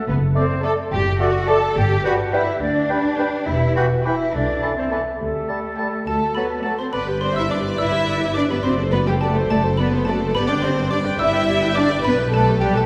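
Magical and mischievous, this whimsical film cue moves at a relaxed 70 BPM in a straight 6/8, set in G major and cut from a longer piece. Up front, bowed cello and double bass sections form a lush, expressive foundation, while the viola section adds a close accompaniment with portamento. A rich violin section carries the melody in the background, with a second, sul tasto violin section tracing an intimate line alongside it. Through the opening section, a distant, pure-toned silver flute, a soft oboe, a very quiet clarinet and a roomy bassoon add woodwind color, and a mellow French horn section holds tight sustained chords. At 6.1 seconds a woody, dry xylophone with plastic mallets takes up the melody, and the cue settles into a plainer harmonic path of G and D7/F#. The whole ensemble sits back in a wet scoring-stage reverb with a 2.1-second decay.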